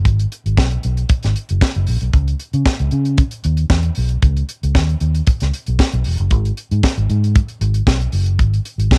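Danceable and sultry, this short disco groove at 115 BPM pairs a vintage muted fingered electric bass, dark, round and punchy with a foam-muted, amped tone ranging from E1 to C#3, with a tight funk drum kit of hi-hat, high-tuned snare and tight kick that enters at 0.1 seconds. Both parts sit up front in a dry home recording made on cassette, with the drums carrying a cassette-tape character and an airy, polished sound. The passage runs 9.0 seconds and is cut from a longer piece.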